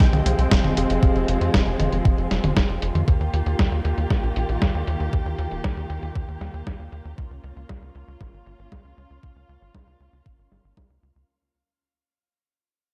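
A thumpy, tape-warm electronic kick sits up front in this melodramatic, danceable italo disco excerpt at 117 BPM, joined by a clean 12-bit drum machine whose medium-tuned snare, hi-hats and toms are low-pass filtered and re-recorded in a large room, while a punchy, driving sequencer bass of wave-folded sawtooth, square and sine tones with a plucky filter and moving notch adds grit. Distant, bowed chamber strings with expressive vibrato hold dark sustained chords through Fmadd9, Ebadd9 and Bbm under a shimmer reverb, and a mellow tine electric piano offers background stabs with digital delay and shimmer until 2.3 seconds. The whole clip fades out across its length as a filter sweeps over the drums, with light reverb and a dark, warm production.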